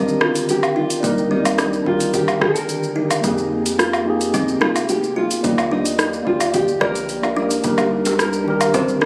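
Sunset chillout in C minor at 109 BPM, this warm, smooth excerpt drifts through Cm9, Fm11 and Ebmaj9 as a thumb-plucked nylon-string guitar carries the melody with vintage 12-bit sampler grit, over a clean tine electric piano and a woody, hollow kalimba playing arpeggios, all three washed in delay and shimmer reverb. Underneath, a round, dark analog bass sits in the background while an up-front deep house kit of metallic hi-hats, rim click, shaker and woodblock, joined at 1.0 s by a punchy electronic kick, adds overdrive and studio reverb. Tight, high-tuned bongos appear faintly from 7.8 s, and the whole piece carries the lush hall reverb, small-room ambience and club reverb of a phone recording made in the room.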